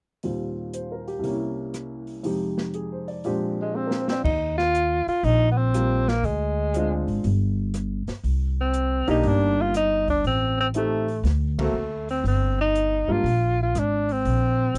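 A breathy tenor saxophone takes the melody from 3.6 seconds, its mellow subtone, vibrato and scooped notes sitting up front in this playful small-group swing and bop piece at 120 BPM in Eb major. A baby grand piano opens as accompaniment alongside a dark, smooth drum kit with boomy kick and dark cymbals, and a drum fill leads into the woody pizzicato upright bass at 4.2 seconds. The dry, close 1970s-style studio sound keeps the piano natural through harmony such as Eb6, Cm9 and D7b13, with a band accent before the piano drops out at 13.2 seconds in this fragment of a longer piece.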